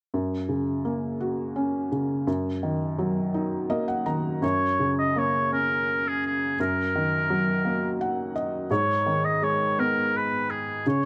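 A classical-style oboe carries the melody of this tender, gentle lullaby, entering at 4.4 seconds with a soft attack, light vibrato and a roomy, up-front presence. Underneath, a felt-muted upright piano provides the accompaniment throughout, its mellow, intimate tone coloured by audible action noise. The piano plays short fills at 3.3 and 7.6 seconds. In F# major and a rubato 6/8 at 56 BPM counted in dotted quarters, the harmony moves gently between F# and D#m/F#, touching G#m near the close. Light reverb and close, detailed miking give the fragment a natural, cradling sound, as it is cut from a longer children's piece.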